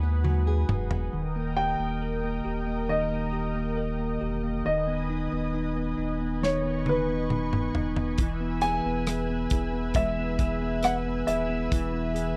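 A smooth, vintage-toned grand piano carries the melody with a slapback echo in this emotional, hopeful pop ballad, an excerpt at 68 BPM in 4/4 with a straight feel, tuned to A4 = 437 Hz and moving from G#m7 through D# to E. A bell-like, bright tine electric piano sits up front in the accompaniment over a deep, round sine sub bass, while a lush, warbling sawtooth unison pad with chorus holds sustained chords above. A fingerpicked steel-string acoustic guitar plays arpeggios in the background with audible finger squeak, and a punchy, polished studio drum kit plays a brief fill at the start, then returns at 6.4 seconds with another fill, with the guitar coming back at 8.2 seconds in a dry, close 1970s-style recording with light reverb.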